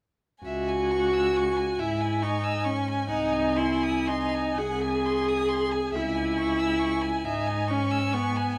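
Classical string quartet music, solemn and elegiac, in a slow, rubato 6/8 cut from a longer piece. A focused violin holds a high melody alongside a second violin's upper line and a viola's rich, vibrato-laden accompaniment, while an up-front cello anchors the bass with soft attacks and expressive portamento, all set in light reverb as the harmony moves from C#m to G#/B# at 3.1 seconds and back.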